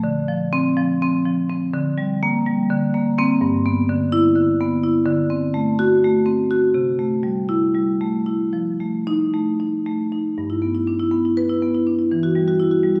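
Heard from further back in a recital hall with a generous 1.4-second reverb tail, this short passage from a longer contemporary classical piece features a solo marimba played with medium mallets, its tone airy and up front, ranging from G2 to B4. The mood is warm and playful, the rubato pulse moving in 7/8 at roughly 221-257 eighth-note beats per minute, drifting through Dm7 and Gm/D before settling into G major at 3.4 s by way of G6, D7, C6 and F7. A new section begins at 10.4 s, returning to G6 and closing on an Emadd9 color.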